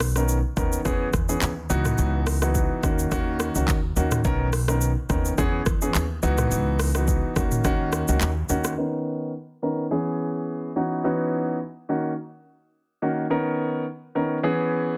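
Afrobeats with a joyful, breezy lilt, this excerpt sets a woody, thumpy pizzicato upright bass against an up-front, electronic afro-pop kit of deep kick, smooth hi-hats, handclaps, rim clicks, shaker and toms, all over a looping Bmaj9, E6, C#m11, D#m7 progression. A warm, polished grand piano carries the chords, passing through a low-pass filter. Around 8.8 seconds the drums and bass fall away, and the piano continues alone under a filter sweep in a dry, dense, heavily limited modern mix.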